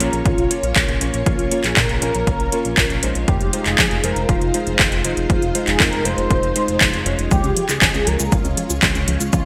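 Danceable and melodramatic, this italo disco excerpt moves at 119 BPM in a straight 4/4 in F minor, cut from a longer piece and set in a lush hall reverb with a bright 1980s-style digital sheen. A thick, bold unison lead carries the melody between F4 and C5, its detuned sawtooth tone sustained with vibrato and softened by ensemble chorus and digital delay. Behind it, a vintage string machine holds sustained chords with a slow attack, while an electric grand piano with a clangy low end adds stabs until 7.5 s. A glossy, nasal synth bass built from pulse and sawtooth waves runs from Eb1 to Bb2 with a touch of tube saturation, and an up-front house kit of metallic hats, handclaps and cabasa, overdriven and gated, is joined by a punchy electronic kick that enters at 0.3 s. At 7.3 s, as the harmony arrives at Db after Bbm and Fm7, a warbling, lo-fi pluck slips in underneath with dusky arpeggios between F3 and F4.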